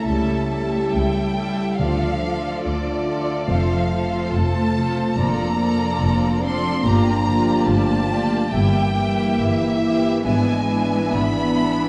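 Classical slow romantic movement for symphony orchestra in D minor at 70 BPM with a rubato 4/4 feel, solemn and yearning, cut from a longer piece, where a lush, expressive violin section carries the melody over a smooth second violin line, focused violas, a mellow horn section holding sustained chords, ringing thumb-plucked harp arpeggios, an intimate, soft-attack cello bass and a bowed double bass entering at 0.1 seconds, with timpani in medium mallets sounding briefly from 1.8 to 3.0 seconds, all set in a wet concert hall reverb with a layer of vinyl crackle.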